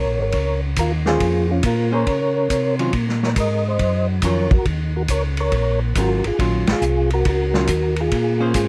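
Soul jazz organ trio in a smoky, late-night mood, swinging at 139 BPM over a Bbm9 chord. A soft, flute-like percussive tonewheel organ carries the melody through a slow rotary speaker and chorus vibrato, while a smooth tonewheel organ with key click plays the bass line. A vintage drum kit with dark cymbals and a punchy kick enters at 0.3 seconds, a clean, hollow-bodied archtop guitar adds picked accompaniment from 1.1 seconds, and the band hits an accent at 6.6 seconds in this dry, dark-toned excerpt cut from a longer piece.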